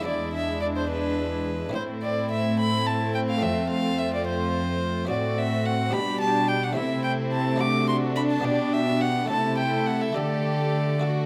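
A rich, reedy solo violin sings up front from the first moment of this festive, lively baroque-style concerto movement in 6/8 at 71 BPM, over a nasal background violin section and a muted, lute-like buff-stop harpsichord. At 0.1 s a smooth-topped second violin section, a dark, distant viola section and a warm, up-front cello bass join in, all with period-style gut-string tone and light vibrato in the upper strings. The harmony moves from E7 through Am and F before settling into G major at 5.1 s and arriving on a Dsus4 at 10.2 s, caught by close, detailed microphones in a recital hall with moderate reverb.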